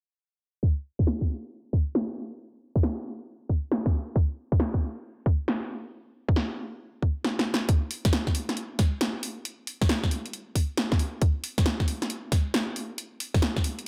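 Soulful and skippy, this UK garage excerpt moves at 136 BPM in 4/4, with a 65% swing on the 16ths. A tight, layered electronic kick sits up front from 0.6 seconds, joined at 1.1 seconds by an analog drum machine whose hi-hat and punchy, overdriven snare carry the air of a large room. A light reverb and low-pass filter shade the mix, and a filter sweep runs through the opening until a drum fill at 7.2 seconds leads into the second section.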